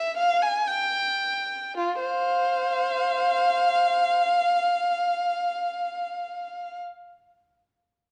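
A single bowed violin, up front with vibrato, expressive portamento and a smooth top, plays an introspective, flowing baroque-style suite movement in F minor, tuned to A4 = 441 Hz, in free time, easing to a slower pace over the first 1.8 seconds before moving into a new passage through 6.2 seconds, all within a dark, wet recital-hall reverb in this short cut from a longer piece.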